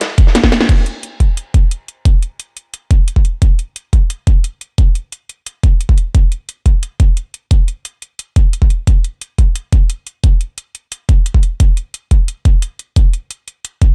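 A gritty, saturated acoustic breakbeat kit opens the track at 0.0 s, its dark cymbals and medium-tuned snare set against a drum and bass kit that plays from the start to the end of this fragment of a longer piece. An overdriven electronic kick joins at 0.2 s, knocking and sitting up front in the mix. During a short drum fill, a band accent at 0.6 s marks the point where the breakbeat kit drops out. The tense, dark drum and bass groove then runs at 176 BPM in a straight 4/4, driven by the cracking snare and metallic hats of the layered electronic kit. The production is dark and warm with little reverb, and both electronic drum parts carry the close character of a small room.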